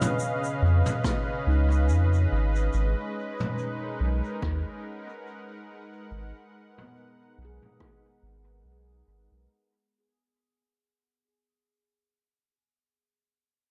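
Hazy and spacious, this ambient dub excerpt drifts in a swung 4/4, cut from a longer piece, with the whole passage fading out across its length. A smooth, detuned sawtooth analog pad holds sustained chords moving from Db7 to Abm7, colored by chorus and tremolo. Beneath it a deep, round sub bass of triangle and square waves enters at 0.6 seconds, sitting up front as the loudest part. A distant, roomy brush kit plays rim clicks, shaker and toms with a rolled-off top and a filter sweep running over it, while an overdriven, punchy electronic kick joins at 1.0 seconds and drops out at 8.0 seconds. Mellow handpan arpeggios, struck with soft fingertips and band-limited through a low-pass filter and tape echo, ring in the background and carry on alone after the pad, brushes and bass stop at 9.5 seconds, within a dark, lightly reverberant production.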